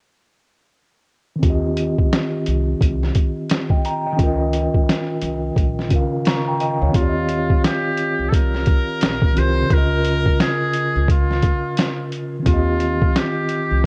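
Lo-fi hip hop with a mellow, cosy swing, this clip sets a mellow tine electric piano, heard clean through its built-in speakers with a cassette-tape tint, over a woody, thumpy pizzicato upright bass and a muffled, pitched-down sampler-style drum kit whose overdriven kick and snare sit up front. At 7.0 seconds a distant, buzzy trumpet with metal mute enters as a jazz-style solo, thin and roomy, with vibrato and scooped notes. The whole recording sits in light reverb and carries the warble and pitch drift of worn old tape.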